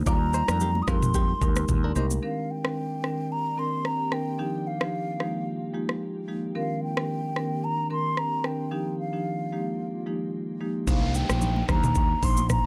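Afrobeats with a mellow, smooth feel and a gentle 16th-note swing, cut from a longer piece, where a hollow, pure concert flute with vibrato and tape echo carries the melody over dark marimba chords and an electronic afro-pop kit with a knocking kick and smooth hats. A round, punchy fretless bass, soft-handed high-tuned congas and a twangy, direct clean electric guitar riff with tremolo and tape echo play at the opening, then drop out as a glassy, ethereal FM pad with chorus and sidechain pumping drifts in the background from 2.9 seconds, with a break at 8.7 seconds. At 10.9 seconds the bass and congas return alongside an electronic downlifter, over a chord cycle moving through Ebmaj9, Fm11 and Cm9.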